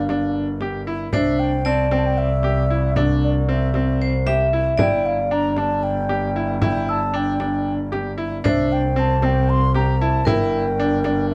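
Contemporary chamber music in a restless, urgent 7/8 at 230 BPM in G dorian, this cut from a longer piece sets a mellow, woody baroque flute melody with vibrato over a metallic, ringing vibraphone line, a bowed, focused double bass, brilliant concert grand piano arpeggios, and a close, dry frame drum in the background, while a delicate, bell-like celesta sparkles only briefly near 0.0 and again from 6.9 to 8.1 seconds, all within a small room's moderate reverb as chords move from Gm7 through C and open fifths back to Gm.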